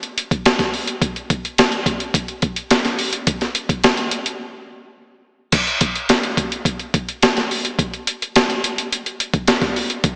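A gritty, pitched-down boom bap drum kit sits up front, with a thumpy kick, a high-tuned snare, hi-hat and crash cymbal carrying this upbeat, glossy pop excerpt in a straight 4/4 feel. A lush hall reverb washes over the compressed, sampler-style hits, though the overall sound has a small-speaker character. A brief break arrives at 4.4 seconds before a new section takes over at 5.5 seconds.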